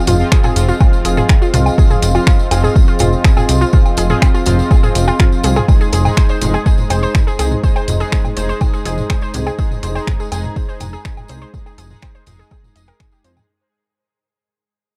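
A punchy, tape-warm electronic kick sits up front in this hypnotic, melancholic melodic techno excerpt at 123 BPM, tuned to A4 = 443 Hz, with a funky, wave-folded analog bass beside it over Fm7, moving to Ab/F at 5.7 seconds as the fade-out begins. A small-room analog drum machine adds finger snaps, hi-hat, toms and woodblock, joined by a jingly, compressed tambourine, while a warbling, lo-fi pluck spins arpeggios through chorus and digital delay. Bold, detuned synth brass stabs, also chorused and delayed, and a deep, moody sawtooth pad with slow attack and sub octave shade the dark mix, with the brass, pluck, pad and bass all pumping from sidechain.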